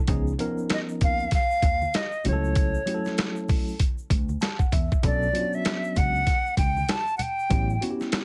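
A bright silver concert flute carries the melody from 0.7 seconds, airy and up front with a crisp attack, lifted highs, expressive vibrato and a plate reverb, over a cool, nocturnal jazz-hop groove at 97 BPM with a 16th-note swing. Beneath it, a worn, slightly out-of-tune tine electric piano plays mellow chords through its built-in speakers and adds a fill at 4.1 seconds, while a woody pizzicato upright bass and a gritty, pitched-down boom bap sampler kit with a thumpy kick and medium-tuned snare drive the beat. Soft-handed egg shaker and congas sit close and dry in the background, and the whole excerpt carries a heavily compressed radio sound with light reverb as it moves from C#7 through F#m7/C# and Bmadd9 to A13.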